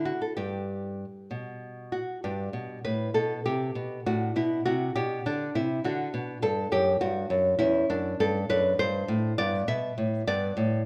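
Classical in a baroque-style dance idiom, this solemn, introspective fragment of a longer piece features a solo fingerpicked nylon-string guitar with a dark, small, up-front tone spanning E2 to E5, unfolding in G major at a rubato 67 BPM in 6/8 through chords from G and D5/A to Cmaj9/B, Em13 and D/F# before settling on G at 9.4 seconds, all framed by a moderate recital-hall reverb.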